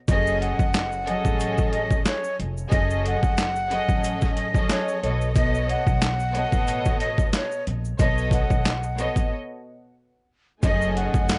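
Gritty, overdriven boom-bap drums sit up front in this moody, reflective hip-hop excerpt, a sampler-style kit of thumpy kick, medium-tuned snare, handclaps and hi-hat, compressed and re-recorded in a small room, moving at 91 BPM with a light 16th-note swing. A breathy jazz flute carries the melody in F# dorian with a soft attack and straight tone, its lifted highs giving the line an expressive, airy edge, while a lush, intimate string section plays close accompaniment, bowed sul tasto with vibrato and a cassette-tape tint. Beneath them a woody upright bass on gut strings plucks a dark, thumpy low end, and a grainy, bright tube shaker ticks away in the background. The harmony moves from F#m69 to B9 at 5.0 seconds, a break arrives at 9.3 seconds, and the harmony returns to F#m69 at 10.6 seconds, when a very quiet, smooth second string section adds sustained chords. The sound is dry and dark-topped, with little reverb, keeping the whole groove close and hazy.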